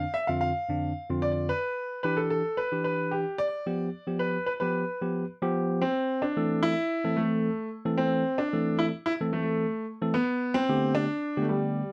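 A polished baby grand piano carries the melody, with a short slapback echo, over a clean tine electric piano playing accompaniment through its built-in speakers, both sitting up front from the start of this confident, driving pop excerpt at 111 BPM in straight 4/4. The harmony moves through Dm7/F, Em7 and G7 before settling into A minor at 5.8 s, where a new section begins, and closes on Gadd9 around 10.2 s. The sound is a dry, close 1970s-style studio recording with light reverb, tuned to A4 = 442 Hz.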